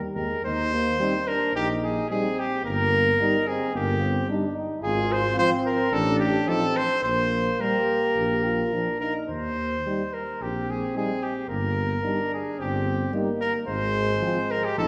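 A bright, distant trumpet carries the melody up front in this triumphant, noble classical brass quintet excerpt in Eb major, moving at 109 BPM in a straight 4/4 from 0.2 s. A dark flugelhorn with light vibrato sings a soft second line in the background, while a mellow French horn and a close-miked trombone with a gentle attack hold the accompaniment from the opening moment, and a smooth-topped tuba anchors the bass. The whole group sits further back in a wet scoring-stage reverb, its harmony moving from Eb through Fm/Ab, Gmadd11/Bb and Bb before returning home and arriving on Fm/Ab at 13.7 s.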